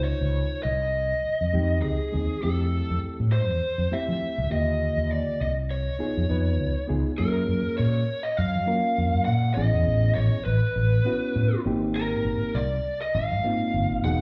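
Funky and slick, this short electric jazz fusion excerpt rides a 101 BPM swung groove in 4/4, with a growly, punchy fretless bass up front under a dark, overdriven lead guitar melody through a small cranked amp with slapback echo, while a reedy, clean electric piano comps through its built-in speakers over mostly major-ninth chords that settle into F# major at 7.2 seconds, all heard live through a club PA with light reverb.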